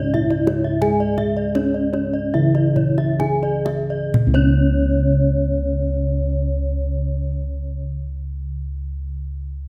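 Heard in a moderate recital-hall reverb, this hypnotic, shimmering excerpt of Balinese gamelan in 4/4, moving between 60 and 93 BPM and slowing over its first 4.1 seconds, sets a mellow, airy bronze metallophone melody struck with padded mallets, its paired tuning producing shimmering beats, over a soft metallophone accompaniment in the background, while two bright horn-mallet metallophones ring out arpeggios, dark, round bossed gongs carry the bass up front, and a tight, close kendang played with hard hands drops out at 4.6 seconds.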